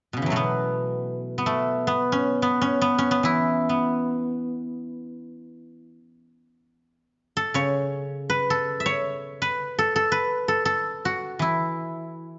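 Serene and elegant, this short passage from a longer Chinese traditional piece features a solo guzheng in free time and E zhi mode, its silvery, ringing fingerpicked tone sitting up front from B2 to E5 in a moderate recital-hall reverb, with a new section arriving at 7.0 seconds before the recording ends at 12.4 seconds.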